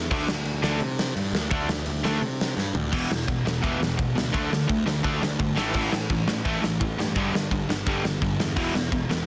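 Punk rock with a raw, aggressive mood, cut from a longer piece, built on a bright, crunchy, double-tracked electric guitar riff that sits up front, backed by a growly, fuzzy picked bass. A big acoustic drum kit with a punchy kick, medium-tuned snare and a dark, rolled-off top drives the music, and a drum fill at 2.6 seconds leads into a new section at 2.9 seconds. The chords move through D5, E5, A5 and G5 under light reverb, with a dense, heavily limited modern master.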